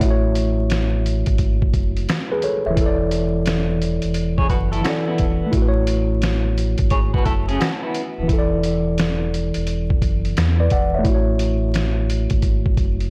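A dry, gritty recording laced with vinyl crackle frames this dreamy, cosy lo-fi hip hop passage at 87 BPM in A major, where a worn, slightly out-of-tune tine electric piano sits up front over a deep sine sub bass with transformer saturation and a muffled, pitched-down sampler drum kit of thumpy kick, snare, hi-hat and finger snaps, while an electric guitar through a small old amp, slightly broken-up with tremolo and analog delay, adds a second line from 4.4 to 8.3 seconds.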